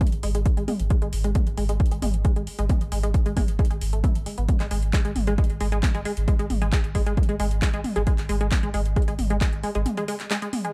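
A dark production set in digital ambience frames this relentless, driving peak-time techno excerpt at 134 BPM in straight 4/4, resting on a G#5 chord and tuned to A4 = 438 Hz. A punchy, layered electronic kick sits up front beside a techno kit of handclaps, toms and metallic hi-hats, while a deep, round sine sub bass on G#1, with overdrive, low-pass filtering and sidechain pumping, holds steady underneath. A tight, detuned sawtooth synth riff with a filter pluck, chorus, digital delay and its own sidechain pumping drives through the whole passage, and the kick drops out at 9.5 seconds before a brief break from 9.9 seconds.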